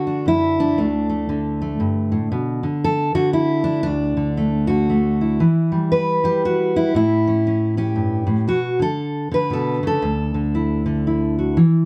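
Lightly reverberant and dark in tone, this short cut from a longer folk piece features a solo fingerpicked steel-string dreadnought guitar, full-bodied and up front with audible finger squeak, playing a gentle, nostalgic tune in 3/4 at 117 BPM with swung eighths in D major, its chords moving through Bm, Dadd9, Emadd9 and A after 2.3 seconds.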